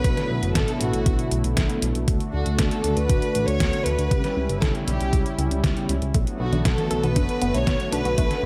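At 118 BPM in a straight 4/4, an overdriven, thumpy electronic kick anchors this nostalgic, danceable italo disco excerpt in B minor, joined by a detuned 8-bit drum machine whose congas, hi-hat and medium-tuned snare carry overdrive and gated reverb with a small-room, sampler-style grit. Underneath, a glossy chorused synth bass built from pulse and sawtooth tones runs from D1 to D2, while a smooth, detuned analog pad holds sustained chords through Bm7, D, C#dim and back to Bm7. An intimate chamber violin section, bowed with light vibrato and a soft attack, carries the melody between F#4 and C#5 through a digital delay. Dark, brassy synth stabs with vibrato sit in the background until 5.9 seconds. At 6.1 seconds a bright, round analog pluck enters with arpeggios colored by chorus, tape echo and a filter sweep, all within light reverb and a digital ambience.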